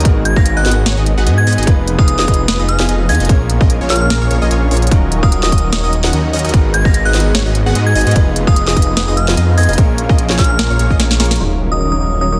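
Lush and bittersweet, this future bass excerpt in Eb minor moves at a half-time 148 BPM with swung sixteenths, driven by an up-front hard-clipped electronic kick, a trap kit with a sharp, softly clipped snare and crisp hats, and a thick, chorused detuned saw bass, while a punchy supersaw stab riff through a low-pass filter, a background grand piano with tape echo and mellow unison pluck arpeggios all pump beneath a glassy, crystalline synth bell melody with chorus and digital delay, and a very quiet ethereal pad sustains chords underneath, cycling through Abm7, Fm7b5, Bbm7 and Ebm7 before a drum fill gives way to a very quiet impact at 11.4 seconds.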